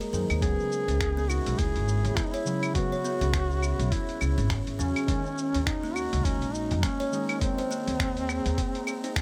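A swung 4/4 groove at 103 BPM drives this mystical, meditative organic downtempo excerpt in C# dorian, built on a gritty, thumpy electronic kick and a dusty soul sampler-style kit of cabasa, claves, finger snaps and hi-hat, with a woody, dark pizzicato upright bass carrying tube saturation up front from 0.1 to 8.5 seconds. A buzzing, ringing kalimba plays delayed arpeggios while a deep, mellow chord stab pumps with chorus and delay, and a warbly, lo-fi tape-like pad sustains nostalgic chords in the background through C#m7, D#m7 and G#add9/D#. Entering at 0.4 seconds, a close-miked duduk carries the folk-style solo melody with vibrato and delay, set in a dry, intimate sound.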